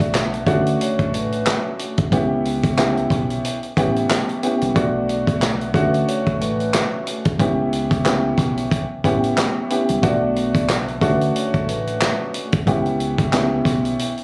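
A gritty, moody boom-bap hip-hop excerpt opens with a vintage drum kit of punchy kick, medium-tuned snare, hi-hat and handclaps up front, a woody, slightly detuned upright piano accompaniment, a round, dark fingered electric bass, and a mellow, ringing soft-mallet vibraphone melody with delay that sits in the background until 12.2 seconds, all heard through a phone-captured small room with club reverb and compression.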